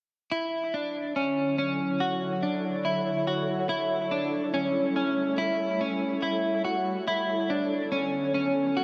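A clean electric guitar opens at 0.3 s, its picked arpeggios sitting up front with a dark, compressed tone colored by analog chorus, dub echo and shimmer reverb. At 1.3 s an ethereal, airy pad enters beneath it, holding sustained chords with a slow attack and long release; its detuned unison layers carry ensemble chorus, built-in reverb and shimmer reverb for a mellow bed. This dream pop fragment, cut from a longer piece, moves at a slow 71 BPM in a straight 4/4 in D major, drifting through Dmaj9, A7 and Bm9. The mood is ethereal and floating, with the guitar staying in a narrow middle register while the pad spans a broader range. A wet plate reverb and an echo-heavy mix wrap the two parts in a long, misty tail until the fragment ends at 8.8 s.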